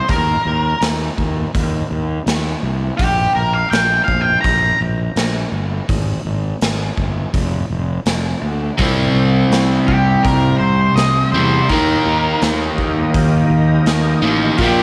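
Raunchy and driving, this short cut from a longer piece is blues rock with a southern rock streak, moving at a straight 83 BPM in 4/4. A dark, octave-fuzz lead guitar carries the melody up front, drops out at 4.8 seconds and returns at 9.9 seconds. Underneath, a growly, punchy fingered electric bass with bright fuzz sits forward in the mix, while a raw garage drum kit of hi-hat, punchy kick and medium-tuned snare sounds gritty and saturated in a bright stone room with a pumping feel and a rolled-off top. At 8.8 seconds a double-tracked, crunchy overdriven guitar riff enters loudest of all, joined by a very quiet, thick overdriven tonewheel organ holding sustained chords through a slow rotary speaker with chorus vibrato. The harmony passes through Gm, a chordless stretch, Dm/F, C and Eb, all wrapped in a moderate echo-chamber reverb and small-room ambience.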